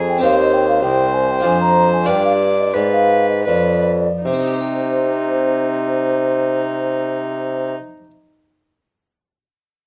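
Light reverb surrounds this short, introspective excerpt cut from a longer piece, a baroque-style sonata movement with continuo in C minor and 3/4 time, played with a grave, rubato feel somewhere between 74 and 103 BPM. A hollow, wooden baroque flute carries the melody from C5 to Bb5, its pure tone touched with vibrato and a crisp attack yet sitting distant, in the background. Beneath it a single bowed violin plays a second line with a gut-string, reedy, period-style sound and light vibrato, placed up front. A solo bassoon anchors the bass, warm and up front, with light vibrato, while a close-miked, dry, full-bodied Italian-style harpsichord with two sets of strings fills out the plucked accompaniment across a broad span from C2 to G5. The tempo slows through the opening phrase as the harmony moves from Cm/Eb through Fm6 to G7, arriving on C minor at 4.3 seconds where a second section begins; the harpsichord is the last to stop, ringing on until 8.1 seconds.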